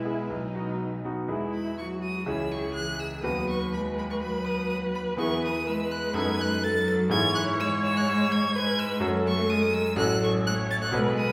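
A reverberant hall gives this lively, cheerful piano quartet movement a spacious, churchlike glow, with a bright, brilliant grand piano sitting up front. A clear, focused violin carries the melody with vibrato and a flexible rubato, while a rich, distant viola adds expressive portamento to the accompaniment and a smooth-topped cello sings a bowed second line. The excerpt is cut from a longer piece and moves through E, C#m and B7/F# before settling on F#m/A at 10.0 seconds.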